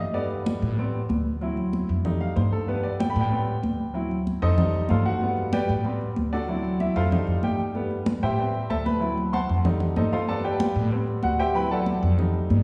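A bright upright piano and a pizzicato upright bass open this joyful, festive salsa cut together, with congas joining a moment later at 0.1 seconds. The piano carries the piece as a solo throughout, its brilliant, woody tone sitting up front across a range from F#3 to C6. Beneath it the acoustic bass, strung with steel, adds a warm, woody low end between D2 and A2, while the high-tuned congas bring a bright, thin-skinned tone, heard close and dry. At a brisk 189 BPM in straight 4/4 and G major, the harmony cycles through Gadd9, Am7, D7 and F7 over and over, giving the passage a buoyant, looping lift. A wet, reverberant hall-like space with a 1.9-second decay surrounds the music, and it ends at 12.6 seconds as a fragment cut from a longer piece.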